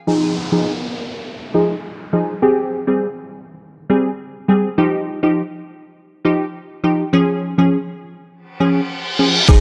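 A crisp, detuned wavetable chord stab opens this tough, sultry dancehall excerpt, its plucky, wave-folded chords moving through Fm7, Abmaj7, Ebadd9 and Db under a filter sweep, with an electronic downlifter beneath and a reverse cymbal rising from 8.7 seconds. At 9.5 seconds the full groove lands: an up-front afro-pop drum kit with a deep kick, crash cymbal and shaker, a round sine sub bass and a close, dry woodblock, the latter two sitting in the background. The dark production is bathed in a lush hall reverb.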